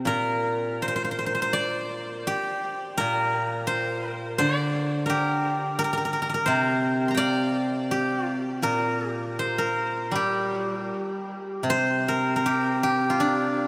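Chinese traditional solo plucked-string music, contemplative and elegant, moves in a free rubato around 76-87 BPM in the G yu mode. A single steel-string zither, played with fingerpicks, carries everything from Bb2 up to C6 with a silvery, ringing brightness, sitting up front while a diffuse ambient delay trails its notes. The dreamy mix is soaked in a huge reverb with a 4.8-second tail, and this short cut shifts into a new section at 11.7 seconds before breaking off at 13.7 seconds.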